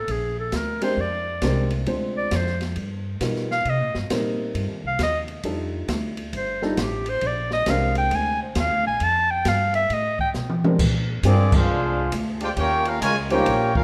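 Swinging and energetic, this big band swing cut from a longer piece moves at 134 BPM in Bb mixolydian, opening with a clear, up-front clarinet solo full of light vibrato and scooped notes over woody pizzicato upright bass, a boomy, dark-cymballed jazz kit and a natural-sounding baby grand piano. A drum fill at 10.3 seconds hands off to the full band as mellow trombones enter at 11.2 seconds and dark, vibrato-rich trumpets follow at 11.3 seconds, hitting an ensemble accent at 11.5 seconds. The brass sits distant and roomy, and the whole is lightly touched with reverb over a progression built on chords like Bb13, G7alt and Eb9.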